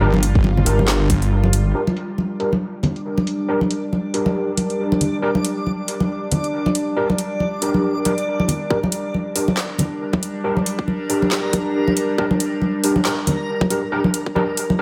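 Heavy and brooding, this excerpt of deep dubstep moves at 138 BPM in a half-time feel with a swung sixteenth pulse, set in G minor over a single G minor chord. It opens on a drop where a saturated, detuned wobble bass sits up front on a low G until 1.7 seconds, joined briefly by a tight electronic kick, while a tense, string-like bowed drone holds sustained chords with vibrato. An overdriven tine electric piano plays gritty stabs through a combo amp, colored by ensemble chorus and dub echo, and a filter sweep runs across it from 1.7 seconds onward. Damped, thick-skinned congas carry their own dub echo beside a garage kit of handclaps, metallic hats and a woody snare, and from 1.7 seconds a reversed, granular texture swells in the background with a dreamy, bright shimmer. The kick returns at 8.7 seconds as the passage builds, all set in a moderate digital room ambience.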